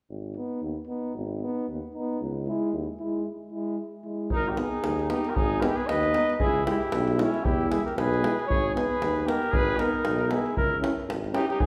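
Fiery and restless, this short Balkan brass band cut at 115 BPM in a swung 2/4 and G# harmonic minor opens on an up-front tuba bass with clear euphonium and soft-attacked, close-miked trombone backing, then at 4.3 seconds, after a brief break, a mellow, vibrato-laden flugelhorn takes the melody over a warm trumpet second line and deep davul, all in a wet recital hall reverb.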